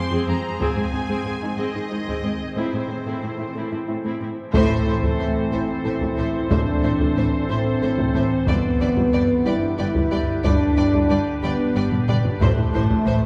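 A slow 6/8 pulse at 61 BPM drives this vast, futuristic excerpt of a hybrid orchestral and electronic film score, where heavy-sticked, vintage taiko drums thunder under a distant, vibrato-rich violin section melody, an evolving, warbling wavetable pad with chorus and built-in reverb, a very quiet, round pluck arpeggio, a focused viola accompaniment and a lush cello bass, until dark French horns enter up front at 4.2 s and a second violin line and double basses join at 4.5 s with a band accent, before a drum fill at 11.9 s, all bathed in a cavernous church reverb over chords moving from Fm through G# and Am to G and back to Am.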